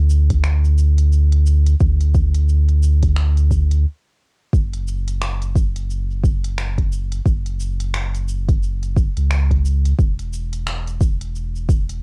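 A round, sine-toned sub bass sits up front through this earthy, mystical organic downtempo excerpt, its fast-attack notes sustained, and from 0.3 seconds an overdriven, deep electronic kick joins it up front. Further back, a quieter electronic kit of finger snaps, smooth hi-hats and shaker carries cassette coloring and the air of a large room, with its sixteenths swung, while the rest of this home cassette recording stays dry. A brief stop from 3.9 to 4.5 seconds breaks the clip before the same section returns.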